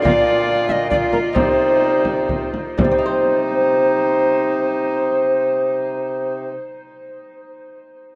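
Renaissance-style consort dance in triple time, solemn and courtly and cut from a longer piece: an airy, chiffy alto recorder carries the melody up front with vibrato over a nasal, gut-string viola second line, a mellow bassoon bass and a very quiet, delicate, fingerpicked lute with double strings, while a deep frame drum played with soft hands sounds from 0.1 to 3.0 s as the opening slows, the ensemble bathed in huge reverb in a vast, echoing space, and the lute rings on alone until 7.4 s.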